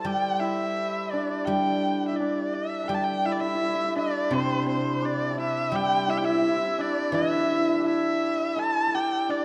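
A single bowed erhu carries the melody up front, singing with vibrato and expressive portamento, while the shimmering, ringing hammered dulcimer plays a second line just beneath it. Lower down, a silvery guzheng played with fingerpicks adds ringing accompaniment in this festive, pastoral Chinese chamber piece in G zhi mode, moving at 84 BPM in a straight 2/4. Cut from a longer work, the fragment shifts into a new section at 2.9 seconds, all set in a dark, warm production with a wet recital-hall reverb.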